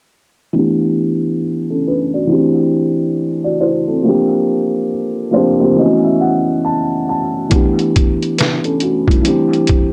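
Cosy and nostalgic, this lo-fi hip hop excerpt at 69 BPM with a swung 16th feel opens on a felt-muted upright piano, mellow and boxy with audible action noise under cassette tape and a filter sweep, moving through suspended ninth chords and a fill from 4.9 to 7.5 seconds before a gritty, compressed trip hop sampler-style drum kit with a thumpy kick, hi-hat and snare joins at 7.5 seconds, all set in a wet studio reverb.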